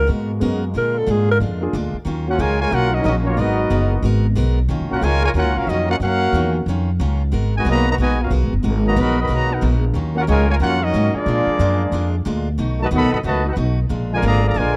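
A dry, close studio sound with a 1970s character frames this brassy, swinging jazz excerpt in Eb minor at 182 BPM in 4/4. It opens with a brief solo from a mellow alto saxophone with vibrato, set over sustained chords from a clear, close-miked trombone section and short touches of concert grand piano with a deep bass register. A woody, thumpy pizzicato upright bass sits up front throughout, joined almost at once by a boxy, picked parlour steel-string acoustic guitar. At 2.3 seconds a warm trumpet section takes over the melody with a smooth top and slapback echo, while the trombones move to a second line in the background. The harmony turns mainly between Ebm9 and Abm9, with Bb7 and B7 colouring the close.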